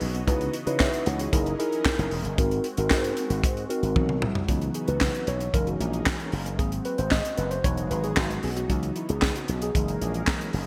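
Bright, 1980s-style digital production with a lush hall reverb gives this slick, late-night boogie funk, cut from a longer piece, a polished sheen. A tight, up-front drum kit with a high-tuned snare, handclaps and gated reverb plays alongside a growly, punchy slap bass shaped by an envelope filter, while a brassy, detuned sawtooth pad with chorus and a filter swell sits in the background. After a drum fill at 4.0 seconds, the mellow, clean tine electric piano, which has been playing accompaniment through lush chorus, takes a solo from 4.5 seconds to the end.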